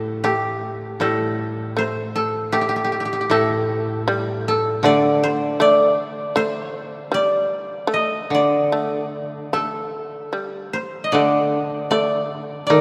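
This is Japanese traditional chamber music, an austere and calm fragment cut from a longer piece, moving at a rubato 77 BPM in 4/4. A koto carries the melody in a mellow, woody voice, played with fingerpicks and placed up front for the full 12.8 seconds. Beneath it, a second koto supplies a low accompaniment, its fingerpicked tone warm and close. A fretless shamisen adds a plectrum-plucked second line in a percussive, buzzing register between the two. The whole ensemble sits in a deep cathedral reverb with a long tail, and lossy compression artefacts colour the sound.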